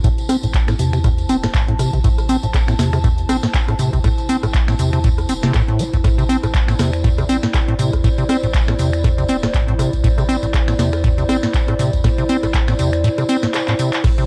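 A rubbery, resonant acid bass riff with tube saturation and tape echo opens this raw, trippy acid house excerpt, joined at once by a deep electronic kick, a booming analog drum machine with crisp snare, metallic hats, handclaps, finger snaps, rim clicks and crash, a faint jingly tambourine, and a warbling, nostalgic pad pumping under chorus and its own reverb. A round sine sub bass slips in underneath at 0.4 seconds, pumping gently, while a lo-fi cassette haze and a dry, homemade sound give the swung groove its dusty edge. Near the close the kick drops out at 13.0 seconds, and a short drum fill arrives at 13.7 seconds.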